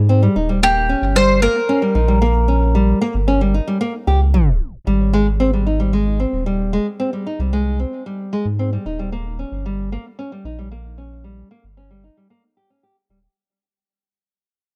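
A dry, close 1970s-style studio sound frames this delicate, hopeful folktronica passage, cut from a longer piece, where a round, deep sine sub bass sits up front beneath fingerpicked classical nylon-string guitar arpeggios, their finger squeak softened by a low-pass filter and tape echo. A picked bowl-back mandolin with doubled strings carries a short melody from 0.6 to 4.3 seconds, also touched by tape echo, over chords moving between Abmaj7 and Eb7. A tape stop ends that opening stretch, and from 4.9 seconds the bass and guitar continue into a long fade-out.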